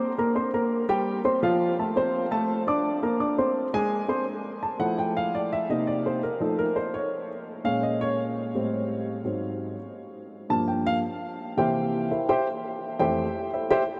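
Lively and sunny, this brief cut from a longer jazz piece at 168 BPM in 4/4 features a solo upright piano, woody and up front with long sustain, ranging from F2 to D6 as it settles into F major at 4.3 seconds and moves through chords such as Fmaj7, Bbm7 and Ab7 before landing on Fmaj9 at 12.8 seconds, all bathed in a huge, wet reverb that places it in a vast, echoing space.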